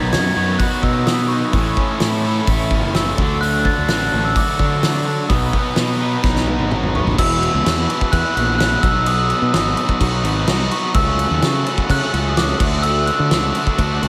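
A big, arena-sized sound with a lush hall reverb opens this jangly, carefree indie rock excerpt at 128 BPM, built on a chord progression that begins on Badd9 and closes on Dadd9. A soft, bell-like glockenspiel struck with rubber mallets carries the melody with a slapback echo, over a very quiet, buzzy combo organ holding sustained chords with a light vibrato, a bright cranked stack guitar riff with overdrive and slapback echo, and a compressed, scooped distorted electric guitar with analog chorus that sits in the background until 7.2 seconds. A growly fuzz bass and a roomy, up-front drum kit with dark cymbals and a fat snare drive the groove, with a drum fill from 6.2 to 7.2 seconds leading into the second section.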